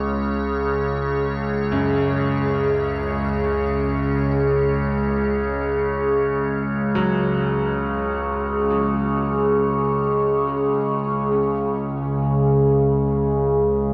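Dark ambient drone in free time, desolate and unsettling, this fragment of a longer piece is built on a nasal, sawtooth-edged drone with moving overtones and an evolving, wave-folded resonant pad with phaser, both sitting up front, while a faint, crystalline glass pad adds icy air until 11.4 seconds. From 1.7 seconds a brilliant, worn-sounding concert grand piano plays arpeggios through delay, its action noise audible and its low register deep and intimate. A pad fades in across the opening 11.3 seconds, and everything is bathed in a huge, wet reverb with a dark, softened top end.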